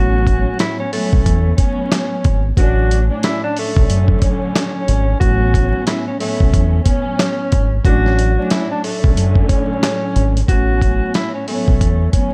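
A swung sixteenth-note groove in four drives this nostalgic, confident boom-bap hip-hop excerpt, with a gritty, compressed sampler-style kit entering at 0.3 seconds, its thumpy kick, snare, hi-hat and handclaps sitting up front beside a round, punchy fingered electric bass. A lush, woody string section bowed with vibrato carries the cassette-tinged accompaniment, while a breathy, mellow tenor saxophone plays a distant jazz-style melody full of scooped notes and tape echo. The harmony alternates between two rich chords over a small room ambience dusted with vinyl crackle.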